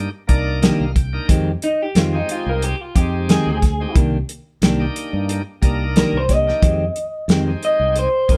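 A twangy, slightly broken-up lead guitar enters at 1.6 seconds over a brooding, straight-eighth soul blues groove at 90 BPM in C minor, where a shouting tonewheel organ with slow rotary speaker and overdrive opens with a fill, a round fingered bass holds the low end and a dry, dark soul drum kit sits up front, and a clean electric guitar adds dark stabs across Cm9 and Fm9 chords in a live room with light reverb.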